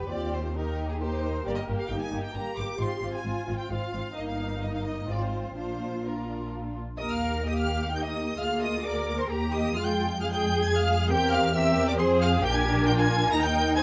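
A warm, even double bass section sits up front in this spirited, lively excerpt from a quick classical-period movement for string orchestra, its bowed low line bringing a lush, close foundation. Above it, a rich violin section carries the melody with focused vibrato and a slightly distant placement, while a second violin section adds a dark, woody second line with a smooth top. The viola section fills in the accompaniment with a soft attack and expressive portamento, and the cellos join the basses on the bass part with a rich, focused, lush tone. The music moves at 132 BPM in 3/4 with a rubato feel, in Eb major tuned to A4 = 442 Hz, opening on Cm/Eb and settling toward Bb before a new section begins at 7.0 seconds and winds through Bb7/D, C7/E and Fm to close on Eb at 13.3 seconds. Light reverb and close, detailed microphones give the ensemble a clear, intimate studio sound.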